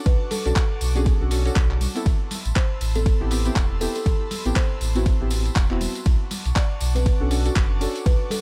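This moody, warm deep house excerpt at 120 BPM in A dorian opens on an airy, breathy pad holding sustained chords with chorus, alongside mellow, warbling vintage chord stabs carrying chorus and digital delay, both pumping under sidechain compression. From 0.1 s a buzzing, woody kalimba plays a melody in short, thumbnail-plucked notes through tape echo, while an up-front sub bass with octave, full and sine-toned, pumps beneath. The groove, swung at 58% on 16ths in 4/4, rests on a layered electronic kick with a deep, produced punch set up front, a gritty, compressed sampler-style kit of handclaps, hi-hat and ride cymbal, and a jingly tambourine kept close and dry in the background. Bright, soft-handed congas join at 0.3 s. The harmony moves from Bm9 to Am9 at 2.1 s and later returns to Bm9, all in a dry mix with little reverb.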